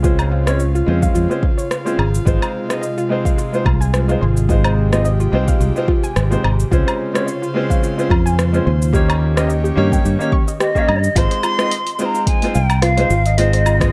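Opening together at a relaxed, swung 108 BPM in Ab major, a deep, overdriven electronic kick and a small-room deep house kit of cabasa, hi-hat, rim click and woodblock sit under an up-front fingered electric bass, a clear, polished baby grand piano with digital delay, an airy, breathy chorused pad that stops at 11.1 seconds, and soft, round arpeggiated plucks tucked in the background, before a distant wooden flute with vibrato takes the melody from 10.6 seconds in this sunset chillout piece cut from a longer work.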